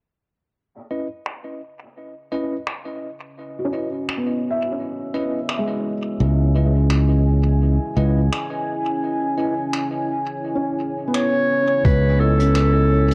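A bell-like tine electric piano opens this deep, meditative ambient dub excerpt in C# minor at 85 BPM on a C#m7 chord, soon joined by a vintage brush kit of finger snaps and filtered hi-hat with dub echo, a dark detuned pad fading in under chorus and reverb, a soft felt-muted upright piano arpeggiating through tape echo, a punchy, up-front fingered electric bass holding C#2 from 6.2 s, and, during a break, a clear clarinet melody at 11.1 s with sampler grit over a muffled, thumpy electronic kick, all coloured by cassette tape and a small room.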